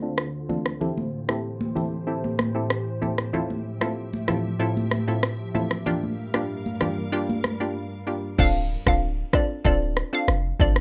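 A rough home-demo mix in a small room carries this mellow, hypnotic afrobeats fragment, cut from a longer piece. A hollow, bouncy square-wave pluck plays accompaniment under a filter sweep, beside a glassy, ethereal FM pad, bright high-tuned congas and an electronic afro-pop kit with a deep kick set up front. After a short break, at 8.4 seconds the pad stops and the hi-hats are muted as a warbling, vintage pluck melody enters with a clean, boomy 808-style bass.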